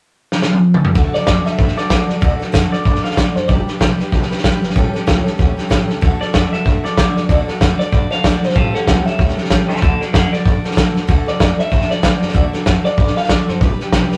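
Rockabilly at a swinging 190 BPM in D major, retro and rollicking, opening with a drum fill on a muffled, up-front vintage kit at 0.3 seconds before a twangy, slightly broken-up electric guitar through a small old amp carries the phaser-tinged melody from 1.1 seconds over a bright, full-bodied jumbo acoustic guitar with audible finger squeak and a woody, thumpy pizzicato upright bass sitting in the background, the whole caught in a rough, tube-saturated rehearsal-room sound with moderate reverb.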